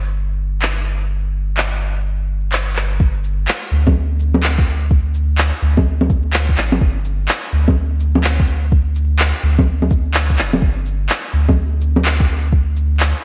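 Bright, 1980s-style digital production sits under a haze of vinyl crackle and a light digital ambience in this melancholic, wistful future garage fragment, cut from a longer piece. It moves at 126 BPM in 4/4 with a swung 16th-note feel. A soft dub sub bass opens the recording, deep and round with a mellow, sustained tone drawn from triangle and square waves, sitting up front and pumping from sidechain compression. From 0.6 seconds, electronic handclaps, shaker and bongos come in close and forward, their snare and percussion dulled by low-pass filtering and wrapped in gated reverb. At 3.0 seconds the track moves into its second part as a soft electronic kick drum joins, playing until 12.6 seconds.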